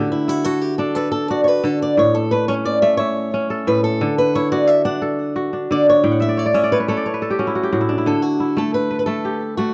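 Warm and joyful, this West African traditional cut of string and xylophone music moves at 118 BPM in a straight 12/8 in D major, with a boxy, fingerpicked swing-style acoustic guitar carrying the melody through tape echo and soloing from 0.0 to 8.1 seconds over D and A chords, while an up-front kora weaves ringing, crisp arpeggios alongside it and adds a fill from 6.0 seconds, all captured in a dry, close 1970s-style studio sound with light reverb.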